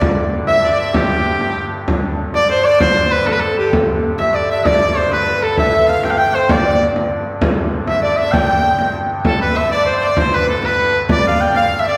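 A rustic, festive medieval dance in G mixolydian, moving in a straight 6/8 at 130 BPM counted in dotted quarters, cut from a longer piece. A soft-reed pipe organ holds a low drone in the background, voiced with an oboe solo stop and a baroque tremulant, while a deep, large frame drum played with hard hands sits up front from the very start. At 0.5 seconds a bright shawm takes the folk-style melody with vibrato and a soft attack, sounding roomy and slightly distant, joined by a single bowed fiddle whose clear, biting, nasal and boxy tone carries a second line further back. A thumb-plucked concert harp adds a ringing second line from 2.3 to 9.9 seconds, carrying on briefly after the music turns to new material at 9.3 seconds. The whole ensemble is heard from further back in a concert hall with a wet, two-second reverb that gives the dance a spacious, festive glow.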